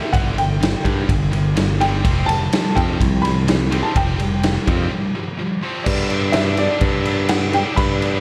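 A dark, woody upright piano carries the melody from the start, its slightly detuned, intimate tone touched by slapback echo and audible action noise, while a double-tracked, high-gain guitar grinds out a distorted riff underneath in this carefree yet wistful indie rock excerpt at 126 BPM in G major. A growly, up-front electric bass and a raw garage drum kit with a punchy kick, medium-tuned snare, ride and crash cymbals join at 0.1 seconds, the kit sounding smooth with a rolled-off top in a bright stone room. After a break at 4.9 seconds, the music moves into a new section at 5.9 seconds, all set in a small room ambience.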